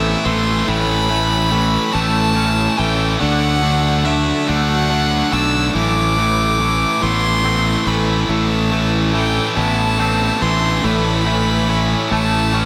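A slow 6/8 pulse at 47 BPM in dotted quarters, played straight, carries this brooding, melancholic rock passage cut from a longer piece. An overdriven electric guitar sits up front with a bright, picked riff, and a growly, punchy fuzz bass, fingered and amped, anchors the low end beside it. Behind them, a clean, twangy electric guitar picks arpeggios through analog chorus and digital delay, and a very quiet, dark synth pad holds deep, detuned sustained chords with a slow attack, phaser and a moving notch. On top, a single bowed violin carries the melody between E5 and E6, pure and floating with an airy bow and digital delay. The harmony moves from Amadd9 to A, then D at 3.2 seconds, and back through Amadd9 to A, all inside a light digital ambience.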